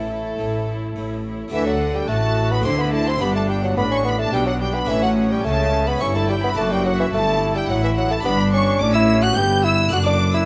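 Close, detailed microphones capture this lively, brilliant excerpt from a baroque-style concerto movement in triple metre, set in a moderate recital-hall reverb, with a mellow solo bassoon up front carrying the melody. A vibrato-rich violin section sings an expressive upper line while a second, focused violin line sits in the background. A distant, even viola section and a plucked French-style harpsichord with octave strings fill in the accompaniment, a lush symphonic cello section and a woody double bass section hold down the bass, and the harmony moves from A through D and G to settle on D/F# at 9.9 seconds.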